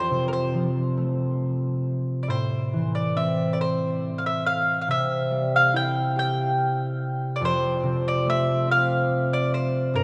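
Celtic folk slow air in 6/8 at a rubato 47 BPM, haunting and longing, where an up-front mandolin with a round, double-strung picked tone carries the melody from Bb4 to G5 over fingerpicked, ringing concert harp accompaniment spanning F2 to G4, both sounding together throughout this 10-second cut through a wet cathedral reverb with a 5.3-second decay, the chords moving from F to Am at 2.3 seconds, C at 4.9 seconds and back to F at 7.4 seconds.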